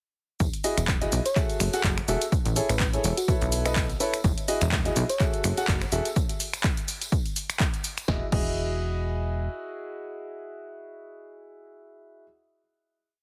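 Feel-good and euphoric, this short piano house piece opens straight into a drop. A punchy four-on-the-floor kick, a tape-warm analog drum machine with snare, claps, snaps, hats, shaker and crash, and a dry tambourine in the background drive a funky, syncopated analog bass riff that pumps with sidechain. A clear, boxy baby grand piano plays dotted-rhythm chords in close voicing with digital delay, a bell-like, sparkling FM electric piano with chorus and tremolo adds short phrases from 1.3 to 5.3 seconds, and the piano rings out on a final Emaj9 chord until 12.2 seconds, with a heavily compressed, radio-style sound and little reverb.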